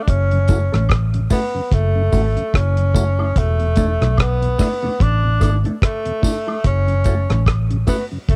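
Meditative and laid-back, this short roots reggae excerpt, cut from a longer piece, settles into an easy 73 BPM in F# minor with a gentle swing on the sixteenths. A tenor saxophone carries the melody in a low register, its tone warm with light vibrato and set distant and roomy in the mix, while a vintage muted fingered electric bass sits up front with a round, punchy, foam-muted sound. The deep reggae drum kit is dry and dark with a tight kick, rim clicks and hi-hat, its rolled-off top giving it a smooth, unhurried feel. Behind them, a mellow tonewheel organ with key click and a slow rotary speaker hovers in the background, and a clean, compressed, fingered electric guitar treated with phaser adds further accompaniment, joined by a tambourine and woodblock part with egg shaker and group handclaps in a live room. The harmony moves from F#m7 to E7sus4 at 3.4 seconds and back to F#m7 at 6.6 seconds, and the saxophone, drums, guitar and organ share a cassette-tape coloring that, with the small room ambience, gives the whole a homespun, lo-fi character.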